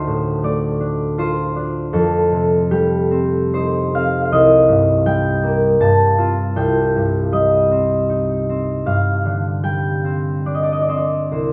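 A freely rubato triple metre carries this wistful, mysterious fragment of a classical solo harp piece, in which a single concert harp, thumb-plucked, ringing and up front, spans a low C2 to a high A5 over drifting chords such as Dm7, F9, Cm7 and G7sus4, all set in the moderate reverb of a recital hall.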